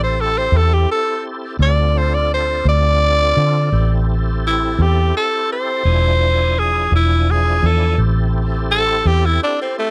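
A growling, raspy tenor saxophone carries the melody up front from the start, over sustained tonewheel organ chords with light overdrive, chorus vibrato, key click and a slow rotary speaker, while a dark, round, foam-muted electric bass sits close and prominent beneath. This soulful, brooding slow blues in A minor moves at 56 BPM in 12/8 through Am7, Dm7 and E7b9 in a dry, intimate sound. At 8.0 seconds the saxophone turns to a gritty jazz solo, and the bass drops out at 9.4 seconds before the cut from a longer piece ends.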